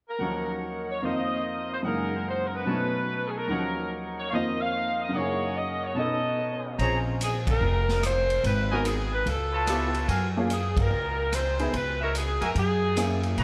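Dramatic, swinging big band jazz in Bb minor at 146 BPM, this excerpt opens with an up-front saxophone section carrying the melody with light vibrato and a touch of delay over clear, short-sustained grand piano and soft-attack trumpet stabs, before a woody pizzicato upright bass and a distant, dark-cymbaled drum kit join at 6.8 seconds, with band accents at 7.4 and 10.7 seconds, all bathed in a dreamy plate reverb.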